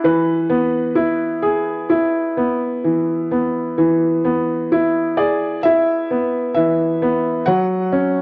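A felt-muted upright piano plays alone from the very start, a soft and intimate lullaby with an innocent, sleepy mood suited to children's music. The playing moves in a gentle 4/4 with a loose, rubato feel, and the notes have a short sustain and a mellow, thin felt tone that keeps every attack hushed. The piano sits up front, spanning from E3 up to F#5, and it touches that highest note at 7.5 seconds, just before the fragment ends at 8.2 seconds. A cassette tape character colours the sound, fitting a home recording made on cassette, while a light, small room reverb gives the close instrument a little air. This brief passage is cut from a longer piece.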